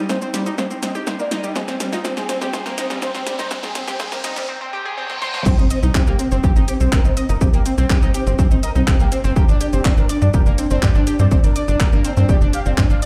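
A smooth, expressive sawtooth lead with chorus, vibrato and dub echo opens this cinematic, melancholic melodic techno excerpt, joined at once by warbling, vintage analog pluck arpeggios and a tight, punchy sequencer bass, all three pumping with sidechain. A filter sweep and fills from the overdriven deep house kit (punchy snare, handclaps, hi-hat, shaker and crash) drive the build-up, while a riser and reverse cymbal sit in the background. The drop at 5.5 s lands with an impact, and the heavy, up-front electronic kick anchors Cm7 and Gm chords, all played on a big sound system in a bare room and bathed in a large studio reverb.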